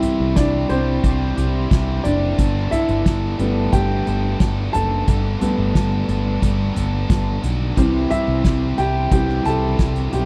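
A steady, straight 4/4 at 89 BPM is carried by a soft-mallet drum kit with a fat snare, punchy kick and big-room sound, joined at 0.2 s by a bright, up-front picked electric bass. A woody, boxy upright piano with audible action noise takes the solo spotlight throughout this anthemic piano-driven pop passage in G major, moving from C to Gadd9 at 2.4 s and back to C at 7.8 s. Underneath, a biting, double-tracked overdriven guitar riff sits lower in the mix with spring reverb, all captured as a dry, close 1970s-style studio recording with small-room ambience and a warm, intimate feel in this section cut from a longer piece.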